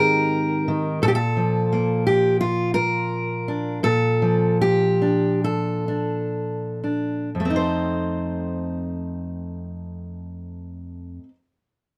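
Hopeful and warm, this brief folk fragment, cut from a longer piece, features a single fingerpicked steel-string acoustic guitar playing solo from 0.0 to 11.3 seconds. The guitar has an auditorium-sized body and sits up front, its notes spanning from F2 to C5. The time feel is rubato within a 4/4 frame, and the playing slows down through the middle stretch, from 1.0 to 7.3 seconds. The harmony moves from Ab to Bbmaj7 and settles on F7 at 7.3 seconds. Close, detailed microphones and a light reverb give the recording an intimate clarity.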